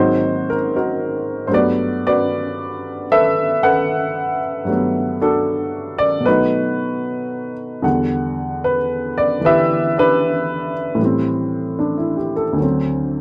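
Close, detailed and nearly dry, this short cut from a longer solo jazz piece puts an intimate, woody upright piano up front, slightly detuned with audible action noise, swinging at 76 BPM in a sophisticated, playful mood through rich chords such as Ab9, Gmaj9 and Em9 before settling toward D7 at 12.6 seconds.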